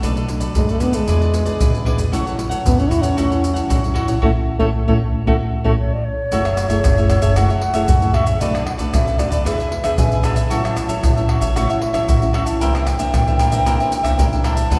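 A mellow trombone with light vibrato and scooped notes carries the jazz-style melody from 0.6 to 5.7 seconds, before an airy wooden flute enters at 5.8 seconds and takes a solo as the key turns from A major to F# minor. This sunny, playful samba and choro clip at 114 BPM, cut from a longer piece, rests on crisp picked cavaquinho, a small thumb-plucked nylon-string guitar and a woody, growly pizzicato upright bass in the background. Up-front maracas, pandeiro, tamborim and a deep surdo played with soft hands drive the groove, with a band accent closing the opening section, and the whole performance sits in a wet concert hall reverb.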